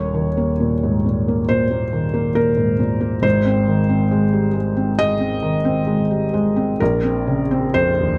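A felt-muted upright piano plays alone in this wistful, reflective neoclassical minimalist excerpt, sitting soft, mellow and intimate up front with audible action noise and light reverb, moving freely around 68 BPM in 4/4 from an opening Eb5 through Abmaj7 at 3.2 seconds to Bbmadd9 at 6.8 seconds, spanning Eb1 to Eb5 and tuned to A4 = 439 Hz.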